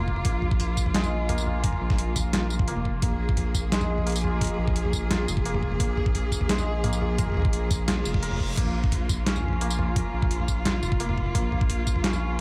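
Set in a digital ambience with light reverb, this cut from a longer half-time drum and bass track feels cinematic and spacious at 173 BPM in 4/4, resting on a Bb5 chord in Bb minor. A clear, bowed cello section holds smooth sustained chords with vibrato, its level pumping against the sidechain, while a hammered santur rings out shimmering arpeggios through a digital delay. Underneath, a deep, saturated sine sub bass sustains low notes with a fast attack. The drums layer a knocking electronic kick, re-recorded in a small room, with an up-front, gritty boom bap sampler-style kit that is pitched down and compressed, bringing a medium-tuned snare, hi-hat, tambourine, toms and crash cymbal, both drum parts carrying studio reverb. A brief electronic reverse cymbal appears between 8.0 and 8.6 seconds.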